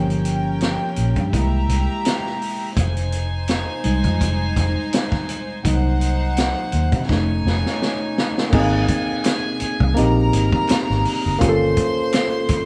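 Lush 1970s-style soul in Ab major at 83 BPM, this smooth excerpt from a longer piece rides a gentle 16th-note swing as a worn, slightly out-of-tune tine electric piano, lightly overdriven through a combo amp, takes a solo over the first 8.5 seconds while a floating, soft-attack bowed violin section carries a second line above it. Underneath, a round, foam-muted fingered electric bass sits up front with a punchy kick, high-tuned snare, hi-hat and dark crash cymbals from a vintage kit, which plays a fill leading into a new section built on an Abmaj9 chord at 8.5 seconds. Very quiet, crisp group handclaps join at 9.3 seconds, all captured as a band playing live in one room with moderate studio reverb.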